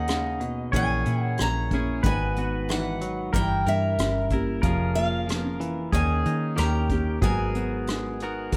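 Opening on a D#7sus4 chord, this intimate, reflective acoustic folk-pop ballad excerpt in G# minor at 92 BPM sets a woody, boxy ladder-braced acoustic guitar with old strings carrying the plate-reverbed melody over a pedal steel second line played with fingerpicks and volume swells, a twangy, scooped clean electric guitar recorded direct for accompaniment, felt-muted upright piano arpeggios with audible action noise and tape echo, a dark, foam-muted, round fingered bass, and a brushed kit with punchy kick, hi-hat and rim click entering at 0.1 s, before the harmony settles on G#m9 at 7.2 s.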